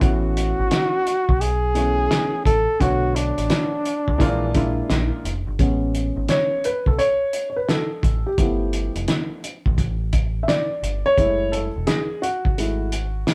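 A snug small-room recording of a band playing live opens this relaxed jazz-hop cut at 86 BPM in A major with a swung 4/4 feel, where a breathy, close-miked flugelhorn sings a vibrato-laden melody until 5.2 seconds, a dark, woody upright piano with audible action noise accompanies and then takes a mellow solo from 5.6 seconds, a round, deep dub electric bass sits up front, and a cloth-damped, thuddy drum kit with a fat snare, tight kick and gritty, muffled lo-fi saturation anchors the groove beneath chords such as Bm9, Bb7#11 and G13.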